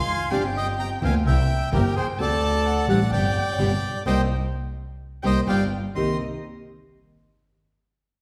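Moving in a free, rubato 4/4, this passionate and dramatic tango fragment opens with a reedy, close-miked bandoneon carrying the melody up front over a dark, bowed double bass with smooth vibrato. A distant, expressive solo violin sings a second line with portamento, a nylon-string guitar enters at 0.3 s with fingerpicked classical accompaniment, and a clear, focused string section adds bowed stabs in the background. The full band lands an accent from 4.1 s to 6.0 s, all within the resonant bloom of a recital hall.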